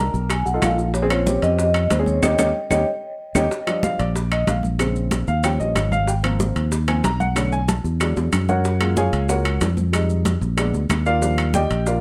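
Afro-Cuban jazz at a brisk 187 BPM, sunny and sophisticated, opens with a mellow soft-mallet vibraphone melody carrying motor vibrato and analog delay over a dark, intimate baby grand with audible action noise and a growly, punchy fingered electric bass up front. After a band accent and drum fill, the vibraphone drops out at 3.5 seconds and the piano takes a solo through rich extended chords. Ringing metal-shell timbales, grainy close maracas, and tight high-tuned bongos, damped congas and woody claves set back in the mix keep the groove moving under light reverb in this fragment of a longer piece.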